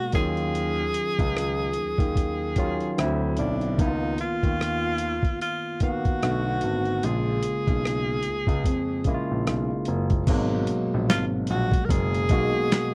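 A breathy tenor saxophone carries the melody from the opening moment, sitting up front with clear tone, jazz-style vibrato and scooped notes, while a bright, barky tine electric piano plays accompaniment through a combo amp. This sultry, smooth slice of neo-soul R&B moves in an unhurried 4/4 with a swung sixteenth-note feel. A sampler-style boom bap kit, compressed, pitched down and gritty, arrives at 0.1 seconds with a thumpy kick, medium-tuned snare, rim clicks, hi-hat and crash, all tape-warm and forward in the mix. A warm grand piano takes the bass role in a low register, intimate and natural with long sustain and audible action noise. The harmony drifts through lush minor-ninth, thirteenth and minor-seventh colours such as D#m9, C#13 and Bm7, settling on G#m9 as a new passage begins at 10.3 seconds. The dry, close sound of a 1970s-style studio, with little reverb, keeps this short extract from a longer piece feeling personal and near.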